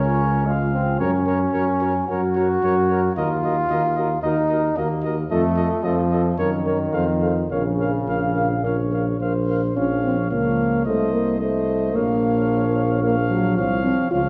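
Grave and solemn, this classical brass quintet passage in Bb minor moves at 111 BPM in 4/4 with a rubato feel, cut from a longer piece. A clear trumpet carries the melody with light vibrato and a smooth top, while a warm flugelhorn traces a second line beneath it with a soft attack, sounding distant and roomy. The accompaniment comes from a present, clear trombone and a mellow French horn with vibrato and a soft attack, and an up-front tuba anchors the bass with a rounded, lightly vibrating tone. All five play together from the start, the horn dropping out at 14.2 seconds just before the others finish. The harmony travels from Db through Gb, Ebm and F7 before settling on Bbm, then passes through Adim/C at 10.9 seconds back to Bbm in the closing section. A recital hall reverb with a 1.2-second decay places the listener further back in the room.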